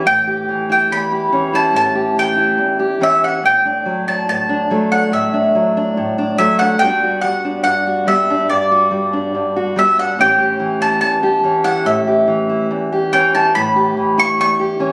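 A round, double-stringed mandolin carries the melody high and up front, picked over a fingerpicked steel-string acoustic guitar whose dark tone fills the lower accompaniment. The pastoral, gentle folk piece moves in an unhurried straight four through A7, D/A and Gmaj7 before the phrase repeats at 10.2 seconds. A moderate scoring-stage reverb and compression surround the pair, and the phone-in-the-room capture gives the sound a close, homespun quality in this short section cut from a longer performance.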